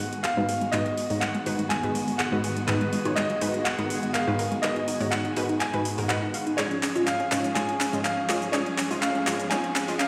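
A bright baby grand piano carries the melody in this dreamy, bittersweet progressive house passage, its brilliant, intimate tone softened by a low-pass filter and delay, with audible action noise and long sustain. Beneath it, a studio string section holds lush, bowed chords with vibrato and portamento, while a round analog pluck spins chorused, tape-echoed arpeggios in the background and a punchy, detuned unison pluck adds decaying stabs with a sub octave. Both plucks carry filter sweeps through the whole clip, which plays as a build-up over a drum fill from an up-front, layered deep house kit with metallic hats, handclaps and shaker in a small room ambience. A reversed, granular texture swells very quietly between G#4 and G#5, and a faint electronic riser joins at 8.1 seconds. The harmony moves from G#m7 to C#/G# at 6.6 seconds, and a lush hall reverb surrounds the mix, giving it the sound of a big system playing in a bare room.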